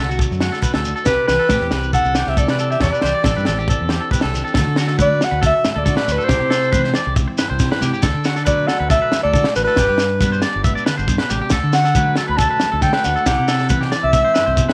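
A straight 4/4 groove at 138 BPM drives this danceable highlife guitar band piece in D mixolydian, cut from a longer performance. A tight funk drum kit, dry and muffled with a high-tuned snare and a saturated, gritty grain, sets the pulse beside a round, dark fingered electric bass. A grainy, vintage shekere joins bright, thin-skinned congas played with soft hands, which sit in the background. An electric guitar at the edge of break-up plays twangy arpeggios with slapback echo, while a picked jumbo steel-string acoustic guitar adds full-bodied accompaniment further back. A warm clarinet enters at 1.1 seconds and stays up front as the solo melody, its jazz-style phrasing marked by light vibrato and scooped notes, over chords that move among D, C and G in a small, lightly reverberant room.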